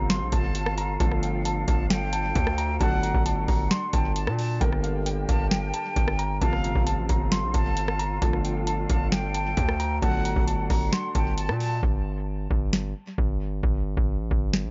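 Brooding and hard-hitting, this half-time trap excerpt rides on a booming, tape-warm analog drum machine with a deep kick, tonal snare and metallic hats, set up front beside a heavy, saturated 808-style bass. A dark, clean electric guitar carries the melody through dub echo, joined by a breathy, close-miked concert flute on a second line, while a felt-muted upright piano with audible action noise supplies soft accompaniment and a distant, airy flute ensemble sustains chords in the background over a G bass. At 11.8 seconds the guitar, flutes and piano stop and the hi-hats drop out, leaving only drums and bass to carry on in an echo-heavy, dulled mix until the cut ends.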